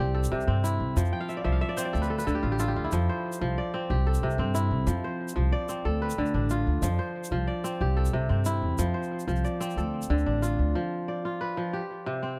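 Rolling along in a straight 12/8 at 123 BPM (dotted quarters), this flowing West African string piece in F lydian is cut from a longer work. It sets a ringing, crisp fingerpicked kora, with tape echo and plate reverb, over a woody, thumpy pizzicato upright bass on gut strings and a grainy, close-miked tube shaker in a dark, small-room production. The kora adds a fill from 1.1 to 2.9 seconds, and after the bass stops at 10.7 seconds it carries on by itself over a brief diminished-tinged turn to the end at 12.4 seconds.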